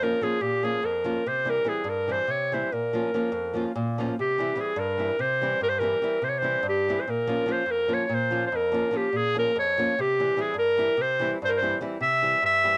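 Balkan folk in a brisk, straight 7/8 at 290 BPM in eighths, bittersweet and restless, cut from a longer piece. A bright, classical-style solo clarinet carries the melody up front, while a small, warm, fingerpicked nylon-string guitar with plate reverb accompanies, both playing throughout as the chords shift between Bbm and C and a second section begins at 4.2 seconds. The home cassette recording gives both parts a tape texture, set in a wet booth ambience.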